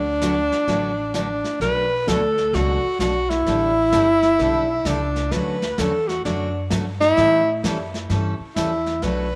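A breathy, close-miked alto saxophone with scooped notes and vibrato leads up front over a woody, thumpy pizzicato upright bass, joined at 0.2 seconds by a bright, full-bodied picked dreadnought guitar with audible finger squeak and a vintage brush kit on snare and hi-hat, in a playful, swinging western swing excerpt at 129 BPM in D major, moving from D6 through Bm7, A7sus4 and Dmaj7 to A7 and bathed in a wet spring reverb with small-room ambience.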